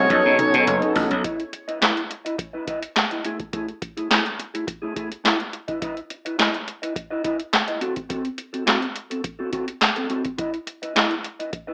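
A dark, clean electric guitar riff carries this danceable, slick early-eighties boogie funk cut from a longer piece, played with the fingers under an analog chorus and running from start to finish at 105 BPM in a straight 4/4. The opening moment is packed: a breathy, subtone alto saxophone in jazz style sounds a single vibrato note through analog delay until 1.0 seconds, while a punchy, detuned sawtooth polysynth comps with a filter pluck and moving notch under chorus. In that same opening, a growly, bright slap bass and a very quiet, woody bowed string section with lush vibrato also play, and all three drop out at 1.2 seconds. From 0.1 seconds, an up-front analog drum machine with a deep kick, crisp snare, metallic hats, handclaps and toms opens with a fill in tape-tinged gated reverb, then carries on beside the guitar to the end. The harmony moves from B9 into Badd11/E and Eadd11/A, back to Badd11/E, then on to F#dim/C before returning to Badd11/E, and the whole piece sits in a moderate large studio reverb with an AM radio sound.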